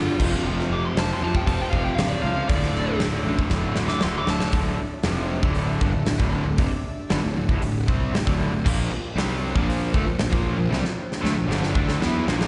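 Heard through a live venue's PA, this hard rock excerpt carries a recital-hall reverb and a dulled top end that tops out at 10.8 kHz. The mood is menacing and heavy, in a straight 4/4, with a huge arena drum kit up front: bright cymbals, a fat snare and a punchy kick, plus a fill that closes the opening passage. A dark, smooth lead guitar with overdrive and analog delay takes a solo over the first section until 4.5 seconds. Three overdriven, picked guitars play the riff. A distorted guitar and a double-tracked stack guitar, both with slapback echo, sit in the background, while a very quiet second stack guitar drops out and returns at 8.6 seconds. A fuzzy, punchy picked bass sits up front with the drums, and an airy, breathy pad with chorus and a slow attack holds soft chords far beneath throughout, while a final drum fill arrives at 10.7 seconds.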